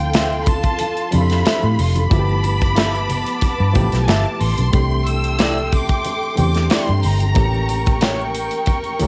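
Lush 1970s-style soul at 91 BPM with a bittersweet, silky mood, this short cut from a longer piece sets a rich, expressive violin section melody over a sul tasto string section, a barky, lightly overdriven reed electric piano with fast tremolo, a dark, foam-muted fingered bass and punchy drum kit up front, a slightly broken-up guitar riff through a small old amp, and very quiet low-tuned congas and shimmering triangle, all moving through Dm9, G13, C69 and A7b9 with the cassette-taped parts carrying a home-recorded, dry character.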